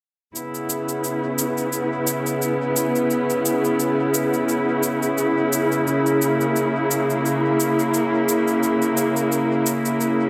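Relaxed and smooth, this short sunset chillout excerpt moves at 87 BPM in 4/4 with a gentle 16th-note swing, resting on a single C#m7 chord in C# dorian. A muted studio string section sits up front from 0.3 seconds, holding dark, veiled con sordino chords with bowed vibrato. Beneath it an electronic, tape-warm shaker keeps time from 0.4 seconds, all set in a small room with light reverb and an echo-heavy mix.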